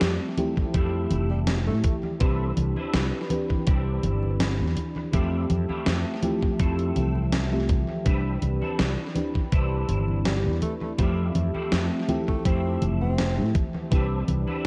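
A thumpy, sampler-style electronic kick sits up front from 0.6 seconds in a straight 82 BPM 4/4. It joins a gated 80s drum machine of congas, hi-hat and gated-reverb snare, with a round, dark fretless bass underneath. This woozy, faded vaporwave excerpt drifts between Fmaj9 and Cmaj9. A lush FM electric piano with a soft pad layer, a twangy clean guitar riff with 12-bit grit and a nostalgic, warbling lo-fi pad in the background carry the harmony through an echo-heavy, cassette-tinged mix. A breathy, whispered tenor saxophone offers intimate jazz-style phrases with vibrato and scooped notes at the start and again from 10.3 to 13.6 seconds.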